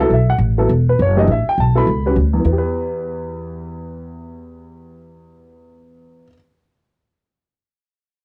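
A woody, thumpy upright bass sits up front in this brief fragment of modal jazz, its plucked steel strings moving through the low register at a brisk 205 BPM in 4/4 with a swung eighth-note feel. Beside it, a warm baby grand piano accompanies in an intimate, natural voice, its short sustain and audible action noise placing the listener close to the keys, with a faint cassette-tape character on its tone. The mood is cool and searching, set in E dorian and tuned slightly high at A4 = 441 Hz. The harmony rests on an open E9sus4 before settling onto E minor at 2.5 seconds. A light reverb and the soft grain of a home cassette recording frame the duo, and both instruments drop away just after 6 seconds as the clip ends.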